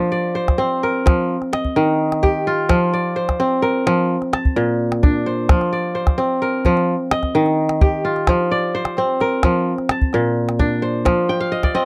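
Hypnotic and reflective, this short excerpt cut from a longer West African traditional piece moves at 86 BPM in a straight 12/8, with an up-front, fingerpicked kora ringing out crisp arpeggios from Bb2 to A5 over a cycle of F5, Eb and Bb chords, joined at 0.5 seconds by a deep, close and dry calabash, before the kora adds a brief fill at 11.3 seconds, all captured in a close 1970s-style studio sound with modest booth ambience.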